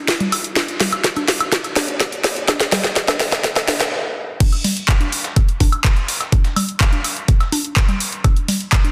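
A knocking, overdriven electronic kick drum sits up front in this house excerpt at 125 BPM, layered with a house drum kit whose cracking snare, handclaps, crash cymbal and bright hats carry the same overdriven edge, the hats and cymbals pumping against the sidechain. Underneath, analog-toned woodblock and congas add a pumping percussive layer, mixed lower, giving the straight 4/4 groove an expansive, dreamy lift. The opening few seconds are a build-up with a drum fill that gives way to a stop at 3.9 seconds before the drop lands at 4.4 seconds. At that point a very quiet, gritty sampler-style kit with a medium-tuned snare and hi-hat slips in beneath the main drums. A moderate concert hall reverb opens the space around the parts, while the dense, heavily limited modern master keeps the whole short clip loud and tight.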